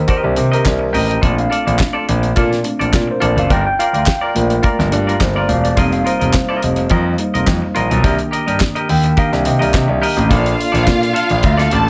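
A straight 4/4 disco groove at 106 BPM rides on a damped 70s drum kit with a tight kick and fat snare, joined by crisp, close group handclaps, while a warm concert grand piano plays the deep, smooth bass line with audible action noise in C dorian. Over this danceable, sultry bed, a mellow tine electric piano takes a solo until 10.3 s, and a clean, twangy picked electric guitar with spring reverb adds accompaniment through chords moving from Cm7 to Bbmaj7, Gm7 and F7sus4. At 10.3 s a dark, woody string section enters, distant and lush with vibrato, inside a studio reverb.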